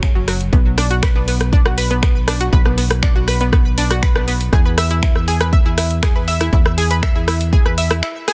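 Melodic techno with a driving, melancholic mood, built on a punchy, up-front electronic kick and a house kit of finger snaps, metallic hats and rim clicks, with soft clipping on the snare. A tight, nasal sequencer bass of sawtooth and square waves pumps against the kick, while a detuned, round analog pluck plays arpeggios through chorus, cassette tape colour, sidechain pumping and digital delay, moving from Bm to E. The dry, dense and heavily limited mix drops into a brief break at 8.0 seconds, as this cut from a longer piece ends.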